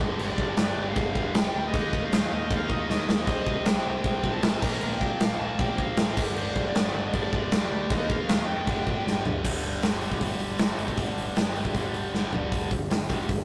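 A tight, double-tracked distorted guitar riff and a growling, overdriven picked bass open this urgent, raw punk rock clip in G minor at 156 BPM in straight 4/4. A big acoustic rock kit joins almost at once, with a punchy kick, a medium-tuned snare, bright cymbals and toms, and it sits up front beside the guitar, which cycles through G5, Eb5, Cm and Bb5 chords. Further back, a nasal lead guitar with a parked wah plays a high, overdriven melody that ends at 9.2 seconds, after which the band drives on into a new passage. Drum fills punctuate the track, and the kit's big-room sound contrasts with the direct, amped bass beneath it. Light reverb and tube saturation give the track the rough feel of a rehearsal room, and it is cut from a longer piece, stopping at 13.4 seconds.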